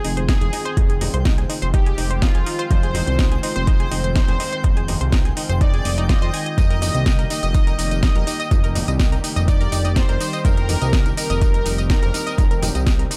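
Progressive house with an emotional, bittersweet mood, this short cut from a longer piece moves in a straight four-four pulse over two chords, Fm7 and then Eb/F at 6.6 seconds. A soft supersaw carries the melody with a smooth, unison-detuned tone and tape echo, while a background analog pad holds sustained chords, its lush chorus giving a warbling, vintage quality and its sidechain pumping tying it to the groove. An analog pluck spins round, bright arpeggios with chorus, 12-bit sampler grit, tape echo and the same pumping, and a fat, tube-saturated sawtooth bass sits thick and sustained underneath. The overdriven electronic kick, up front and deep, enters at 0.3 seconds to join a house kit of cracking snare, metallic hats and tambourine that plays from the start, with distant, ringing congas struck with hard hands appearing very quietly at 0.4 seconds. High above, a very quiet granular texture twinkles with an octave-up shimmer and its own built-in reverb, while the rest of the mix stays fairly dry.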